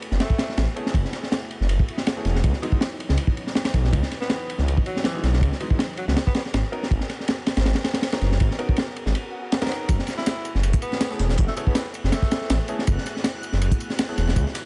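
A thick, menacing detuned saw bass sits up front in this dark, raw drum and bass excerpt with a jungle edge, moving at 161 BPM in F# dorian with a light swing on the sixteenths. Beside it, a crunchy breakbeat kit of punchy kick, high-tuned snare and dark ride cymbal, recorded in a small room, sounds saturated and gritty with a rolled-off top. A very quiet, silky string machine holds sustained chords throughout with a slow attack and ensemble chorus, moving from F#m11 through C#m11 and G#m11 and back to F#m11. A breathy tenor saxophone plays jazz-style phrases with scooped notes and vibrato, and a concert grand piano adds stabs in the background, both carrying dub echo. After a brief break with an electronic swell at 9.3 seconds, a compressed, sampler-style kit of hi-hat, snare and tambourine joins at 9.9 seconds behind high-pass filters. From 10.5 seconds a reversed, granular texture, bright and dreamy, swells softly in the background until the end.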